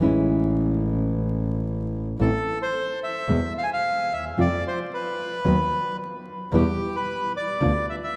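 A thumb-plucked nylon-string guitar with a full-bodied classical tone and a close, earthy bowed double bass with light vibrato open this melancholic, passionate tango in A minor, moving at a rubato 111 BPM over an opening Amaj7 before settling into Am. At 2.2 seconds a reedy, bright bandoneon enters up front with the melody, carrying on until the fragment breaks off at 8.2 seconds, while the harmony passes through E5, F5 and B/D# to Em and Bdim/D. The sound sits in a vast, echoing cathedral reverb with a long 5.2-second decay, touched by the crackle of vinyl.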